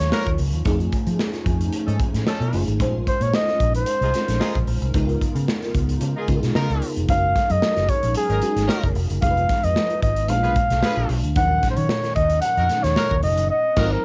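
A warm flugelhorn leads this upbeat, urban slice of polished 1980s jazz-funk pop, its scooped notes and light vibrato sitting up front over a swung groove. A sparkling, bell-like FM electric piano and a hollow, flute-like pad in the background carry the chords, from Ebm9 through Bbm11 and Gb69 to Ab13, while a clear, punchy horn section plays a second line and a dark, round muted bass anchors the low end beneath a pumping studio drum kit with a punchy kick. The cassette tape coloring and light reverb give it a homespun sheen, and the band hits an accent together at 13.5 seconds.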